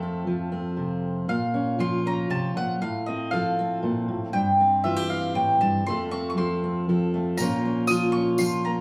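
A fingerpicked dreadnought steel-string acoustic guitar sits up front from the first second, its fresh strings ringing and an occasional finger squeak audible as it carries the accompaniment from F2 up to A4. This short cut from a longer acoustic folk piece moves at 118 BPM in a straight 3/4, set in Bb harmonic minor with a melancholic, intimate mood. At 1.3 seconds a mellow, round mandolin enters with the melody, its picked double strings sitting high between Eb5 and Eb6 as the harmony turns from F to Bbm, then through F/A, C/G and F. A jingly, bright tambourine joins at 7.4 seconds, close and dry and well back in the balance, as the chords return to Bbm. The trio sounds like a small band playing live in one stone room, wrapped in a wet reverb of about 1.0 seconds.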